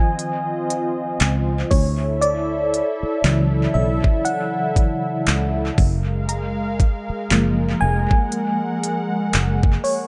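A dry but echo-heavy mix frames this dreamy, smooth contemporary R&B excerpt at 59 BPM with swung 16ths, where a tremolo-laced FM electric piano takes the solo up front over a warm, detuned sawtooth pad that pumps with sidechain and chorus, a faint crystalline wavetable pluck, a trap kit from 0.2 s with a knocking kick, crisp hats and handclaps soaked in tape echo, and a round, foam-muted fingered bass arriving at 1.2 s, while the harmony moves through C#maj9, Dmaj9 and F#maj9 in a tuning of A4 = 436 Hz.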